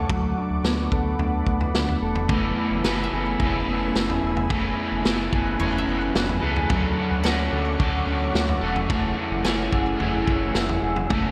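An ethereal, airy pad, a dark, clean electric guitar playing fingered arpeggios through subtle chorus and digital delay, and a round, deep analog bass open this melancholic, haunting dream pop excerpt, joined at 0.1 seconds by a punchy vintage drum kit with gated reverb, then by a bright, double-tracked overdriven guitar with harmonic tremolo and lush chorus at 2.3 seconds and a very quiet, woody koto at 2.8 seconds, within a lush hall reverb and bright 1980s-style digital production.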